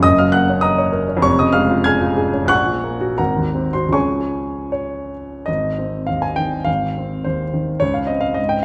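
A baby grand piano carries this short romantic character piece alone, its tone intimate and natural, placed up front with the soft clatter of its action audible beneath the notes. The mood is warm and hopeful, moving in 2/4 with a flexible rubato that lets the tempo drift between 74 and 108 BPM. Opening in Db major over chords that pass from Gb through Db/F and an Ab9, the music settles into Ab major at 5.5 seconds as a second section begins, closing on a Dbmaj7. The piano ranges from F1 in the deep bass up to Ab6, filling the span of a few seconds. A wet recital hall reverb with a 1.7 second tail surrounds the instrument, giving the close sound a glowing halo as this fragment of a longer piece passes by.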